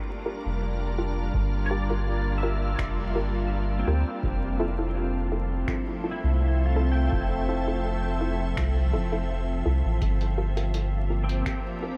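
A lightly swung groove is carried by a deep, tape-warm electronic kick sitting in the background from 1.3 seconds, joined at 2.8 seconds by muffled, compressed sampler-style finger snaps and hi-hat. Beneath it, a round, soft sub bass sits up front while a bright, organ-like pad holds sustained chords with ensemble chorus, and a clean electric pedal steel guitar plays fingerpicked arpeggios with slide and volume swells through dub echo. A mellow, filtered sawtooth chord stab adds muted hits from the background, all in a hazy, meditative ambient dub setting drenched in huge reverb and vinyl crackle, moving from Gm7 to Fmaj7 and back in a passage taken from a longer piece.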